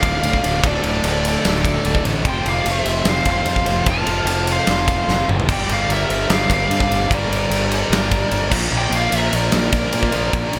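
Aggressive, heavy hard rock at 148 BPM in a straight 4/4, cut from a longer piece: a dark, bluesy overdriven lead guitar carries the melody over a fuzzy octave-fuzz lead guitar's second line in the background, while a very quiet double-tracked overdriven electric guitar and a sludgy double-tracked distorted guitar churn out the riff alongside a growly, punchy fuzz fingered bass and an up-front big rock drum kit with a tight kick and a bright stone-room sound that breaks into a fill at 5.1 seconds, all moving through Dm, F5, Gm and Bb with light reverb and bright 1980s-style digital production.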